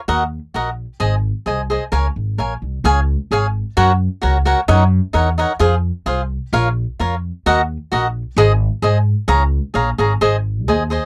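Mexican folk mariachi with a festive, romantic glow and a loose rubato feel, this brief cut from a longer piece sets a crisp, picked cavaquinho up front over a woody pizzicato upright bass strung with steel, both playing throughout a dry, close recording in the manner of a 1970s studio as the chords pass through two statements of the same opening section.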